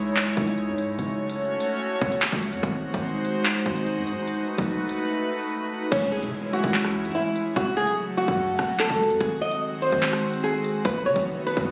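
A dark, ominous drill cut in half-time, built on an airy, breathy pad with chorus, a punchy, heavy 808-style bass and an electronic drum kit with a hard-clipped kick, crisp hi-hats, handclaps, rim click and crash, before at 5.9 seconds a fingerpicked flamenco guitar with digital delay and audible finger squeak takes the melody up front, marked by a very quiet electronic impact, all in a lightly reverberant, compressed mix.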